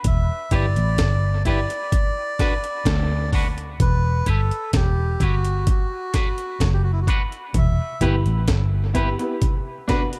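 A dark, round, foam-muted electric bass sits up front in this heavy, deep dub reggae excerpt, alongside a gritty, compressed sampler-style breakbeat kit with a thumpy kick and high-tuned snare that opens on a break until 3.8 seconds while a filter sweep moves through the mix. A reedy, breathy melodica carries the melody and a bright, picked clean electric guitar adds accompaniment, both treated with dub echo and the guitar high-passed. Low-tuned congas played with soft hands come in very quietly at 3.8 seconds, and a woody upright piano with short sustain adds high-passed, echoed stabs from 4.3 seconds, all over an alternating Em and Bm progression in light studio reverb.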